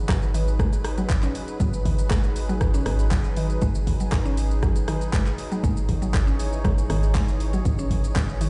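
A vintage, detuned sawtooth pad and a soft FM bass open this afro house excerpt together. The pad holds smooth, warbling chords with a slow attack and chorus, while the bass sits on a single dark, woody low note, both breathing with sidechain pumping. Almost at once a mallet-like FM pluck joins with percussive, full-bodied triangle arpeggios, coloured by chorus, tape echo and the same pumping. Alongside it come a deep house kit of handclaps, hi-hat, rim click, shaker and toms, and a deep, layered electronic kick, all tape-warm and re-recorded in a small room, with the kick dropping out at 8.3 seconds. The harmony rests on G#m7 before moving to C#madd9/G# at 5.6 seconds, giving the straight 4/4 groove a spiritual, earthy mood. There is little added reverb, yet the mix sounds as if played on a big sound system in a bare stone room, with its top end rolled off above 10.9 kHz.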